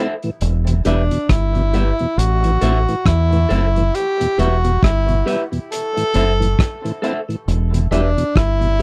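A breathy, whispered tenor saxophone carries the melody up front from 0.9 seconds, its soft attack and light vibrato trailing dub echo through this laid-back, serious stretch of swinging roots reggae built on a two-chord cycle. A deep, round fingered bass sits prominently beneath it alongside a muffled, lo-fi drum kit of hi-hat, tight kick and rim click. A lightly overdriven tonewheel organ with chorus vibrato and slow rotary speaker, and a twangy, slightly broken-up guitar through a small old amp, fill out the accompaniment with their own dub echo, all captured in a dry, close 1970s-style studio sound.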